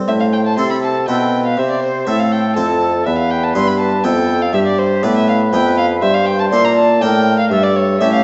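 Solemn and introspective, this brief baroque-style sonata passage in triple time places a bright, plucked French-style harpsichord and a reedy gut-string violin second line up front, while a distant, roomy oboe with vibrato carries the melody and a solo bassoon with light vibrato, likewise set back, holds the bass, the ensemble sitting in a dark, warm, reverberant recital hall.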